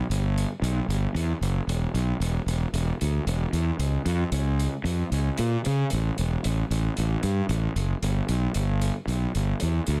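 Featuring fuzz fingered electric bass, growly and punchy up front with overdrive, over a distant, roomy acoustic hi-hat sitting low in the mix, this bittersweet, cathartic quiet-loud alternative rock excerpt in a straight 4/4 has a dry, dense, heavily limited modern sound.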